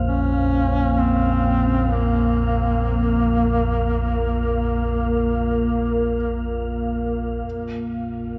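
Ominous and dark, this brief fragment of dark ambient drone unfolds in free time inside a vast, echoing cathedral-like space. A deep, rumbling drone sits up front with a nasal, detuned edge, while a moody, full-bodied pad holds sustained chords through chorus and slow, lingering reverb. An airy, breathy wind-like noise texture hovers in the background on a single high tone, and a synth texture gradually fades out across the first 7.4 seconds. A mellow duduk enters at 0.1 seconds and carries the solo melody up front, its folk-style line shaped by vibrato, scooped notes and a delay, before falling silent at 6.5 seconds. Beneath it all, a very quiet grand piano with a smooth, vintage tone traces short-sustained arpeggios until 7.5 seconds.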